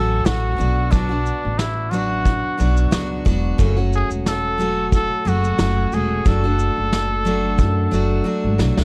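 A vintage-voiced trumpet carries the melody in a pop-style solo, with light vibrato and scooped notes trailed by a digital delay, in this sunny, easy-going acoustic pop excerpt at 90 BPM with a gentle 16th-note swing. Up front, a bright, full-bodied picked steel-string dreadnought guitar and a woody pizzicato upright bass on steel strings move through A6, Bm, F#m and D/F#. A smooth brush kit with tight kick, medium-tuned snare and shaker enters at 0.3 seconds and plays a fill from 8.3 seconds, all set in a small room with a dusky, warm production.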